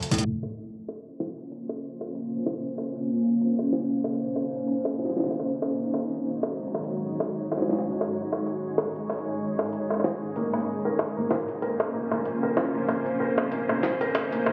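Heard through a phone in a wet, echoing club room, this compressed, low-pass-filtered fragment of eerie, glitchy IDM is cut from a longer piece and carries a filter sweep from 0.3 seconds on. A gritty, pitched-up jungle sampler-style kit of bongos, hi-hat and snare with tape echo opens on a drum fill. A blurred, detuned granular cloud pad with sidechain pumping holds sustained chords from 1.3 seconds, moving from Bbmadd9 to Ab7sus4 and back, while a soft felt-muted upright piano with audible action noise sounds briefly at the start and returns with arpeggios at 10.4 seconds.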